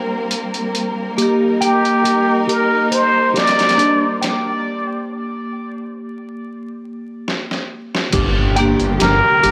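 Vinyl crackle and light digital reverb frame this brooding, cinematic trip hop fragment at 69 BPM in G minor, where a ringing hard-mallet vibraphone with harmonic tremolo, tape echo and a filter sweep sits over lush, bowed symphonic strings, and a gritty, pitched-down sampler-style drum kit with a thumpy kick enters at 0.3 seconds. A dark, clean electric guitar plays arpeggios in the background with 12-bit sampler grit and delay, while a breathy, intimate plunger-muted trumpet carries the jazz-style melody up front with wah-wah inflections and tape echo. After a break and a drum fill, a deep, rumbling detuned saw bass with tube saturation arrives at 8.1 seconds alongside a very quiet electronic impact.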